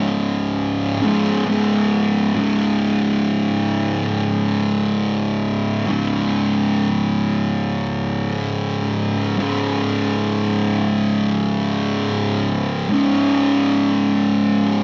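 Hypnotic and ominous, this slow metal fragment cut from a longer piece features a lone thick fuzz guitar, picked and double-tracked, sitting up front from 0.0 to 14.8 seconds. Its low, distorted power chords open on a C#5 and stay in a heavy bottom register, with a brief opening passage giving way at 2.4 seconds to a longer second section. The rough rehearsal-room sound adds saturation and a wet, small-room reverb that wraps the fuzz in close, murky air.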